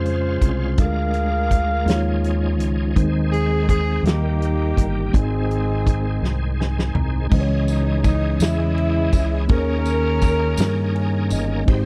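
A saxophone section carries the melody in this slow, hopeful gospel excerpt, its soft attack, light vibrato and smooth top giving the line a soulful, jazz-style glow. Beneath it, a mellow tine electric piano plays clean accompaniment through its built-in speakers, while a bright, shouting tonewheel organ holds sustained chords with key click, chorus vibrato and a slow rotary speaker. A round, dark fingered electric bass and an acoustic drum kit with a fat snare and punchy kick sit up front, moving at 55 BPM in a straight 6/8 over chords that begin on Dbmaj7 and later turn to Dbmadd9 and Eb7sus4. At 6.2 seconds a drum fill and an electric piano fill lead into the repeat of the opening section, and a jingly tambourine joins at 7.7 seconds. The sound is dry and close, in the manner of a 1970s studio recording.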